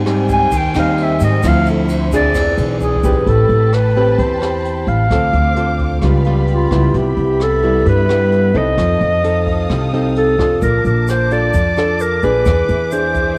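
Bossa nova at 131 BPM, intimate and smooth, settling into A minor at 3.3 s. A breathy, subtone clarinet with light vibrato carries the vintage-toned melody up front, over fingerpicked classical nylon-string guitar, a woody, growly pizzicato upright bass and a brushed drum kit with dark cymbals and a boomy kick that plays a fill leading into 3.3 s. A lush bowed violin section holds sustained chords close behind, while a grainy, bright egg shaker sits in the background at the start and returns from 10.6 s. The guitar, violins and drums carry a cassette-tape tint, and the whole is wrapped in light reverb and small-room ambience from a home cassette recording.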